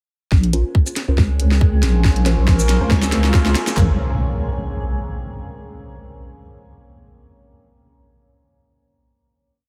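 Lightly reverberant and cavernous, this short, meditative deep dubstep build moves at a half-time gait, with an overdriven garage kit of tight kick, floor tom and claps up front beside a cracking snare, hi-hats and shaker, a dark wobble bass of long gliding chorused notes, a resonant drone with moving overtones, muted sawtooth dub chord stabs under a filter sweep with phaser and dub echo, a reversed, dreamy swelling texture on a held high note, a distant breathy ney adding short phrases from 2.5 seconds, and a riser and impact carrying into a final chord at 3.8 seconds.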